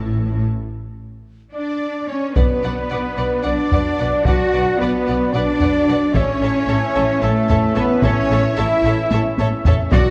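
Epic and dark, this cinematic orchestral film cue moves in 7/8 at 222 BPM (eighths), opening on A with a lush, vibrato-rich violin melody over a second violin line, background violas and cellos, mellow French horn chords and woody, distant double basses. From 1.5 seconds a soft trumpet adds stabs, and from 1.6 seconds a pure, very quiet flute ensemble joins on a second line; then at 2.4 seconds the harmony shifts to B minor as shadowy woodwinds, tight trombones and hard-hit taiko drums enter, before returning to A. A crisp, very quiet timpani note arrives just at the close of this fragment, and the whole orchestra sits in a reverberant concert hall with a dark production.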